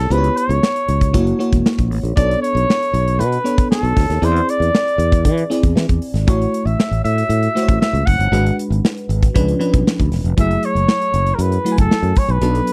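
A clear, vintage-toned flugelhorn carries the melody up front with vibrato and a slapback echo, in a breezy, urban slice of polished 1980s jazz-funk pop. Beneath it, a sparkling, bell-like FM electric piano with subtle chorus provides accompaniment through rich changes running from C#m7b5 and F#7 to a closing F#m9. A growly, bright fretless bass and a modern drum kit, with a punchy kick, medium-tuned snare and hi-hat, sit close and dry in the mix.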